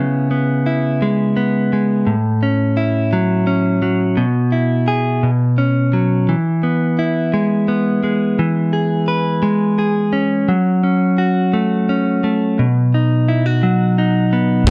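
A clean, direct-recorded electric guitar with spring reverb picks out compressed, up-front chords from C#m7 through A6, E/B and F#m to B in this romantic, heartfelt six-eight pop ballad in E major at 57 BPM, cut from a longer piece and captured with a close 1970s-style studio sound, before a modern acoustic drum kit arrives at 14.7 s with a crash cymbal and a punchy, up-front kick in a small room.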